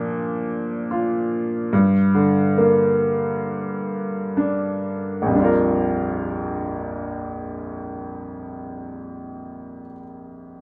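In a straight 4/4 pulse between 61 and 77 BPM that slows through the first 5.3 seconds, this hopeful, emotional pop fragment in Bb major features a brilliant, woody upright piano playing accompaniment from Bb to Gm with long sustain, sitting up front in a wet, live-sounding studio room before it is cut off at 10.6 seconds.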